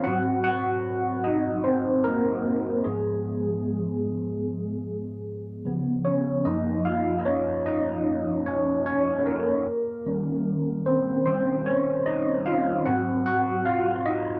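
An overdriven tine electric piano plays alone from the first moment, gritty and up front through a combo amp with a phaser coloring its tone, setting a smooth, warm R&B mood over a swung sixteenth-note feel. Its chords move from G#7, G#m6 and C#7 to F#maj7, D#13 and back to G#7, with the same passage stated twice and the second pass beginning at 6.5 seconds. A moderate echo-chamber reverb wraps the piano in a digital sense of space throughout this brief excerpt from a longer piece.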